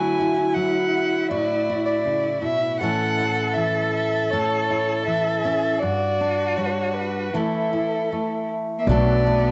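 Over a straight, unhurried 4/4 pulse, this tender, heartfelt acoustic folk-pop ballad sets a dark, woody bowed violin up front on the melody, with vibrato. A clear, smooth cello plays a distant second line beneath it, and a full-bodied jumbo steel-string guitar is fingerpicked, with audible finger squeak. A thumpy pizzicato upright bass on gut strings arrives only at 8.9 s, and the whole fragment, cut from a longer piece, carries a moderate spring reverb, small-room ambience and the dulled top end of a home cassette recording.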